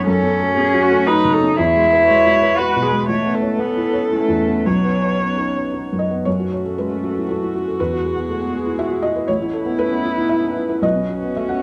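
A veiled, con sordino cello played by a single player carries the second line with vibrato and portamento over a thick-felted upright piano, a dusky muted viola with light vibrato and a hollow, flute-like chorused pad in the background, giving this intimate, hopeful neoclassical piece in a rubato 3/4 its hushed glow as the F#m, Eadd9, Aadd9, Badd9 progression turns twice through moderate studio reverb.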